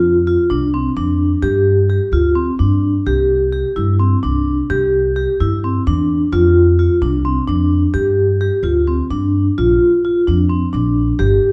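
A dark production set in a lush recital-hall reverb frames this hypnotic, urgent chamber piece in 7/8, moving at 259 eighth-note beats per minute with a straight feel. Up front, a vibraphone played with medium hard mallets spins ringing, metallic arpeggios with a fast motor vibrato, while a woody pizzicato upright bass on steel strings anchors the low end. Both parts cycle through F5, G5 and Cadd9 chords before the harmony turns to Bb at 9.6 seconds, shortly before this cut from a longer piece ends.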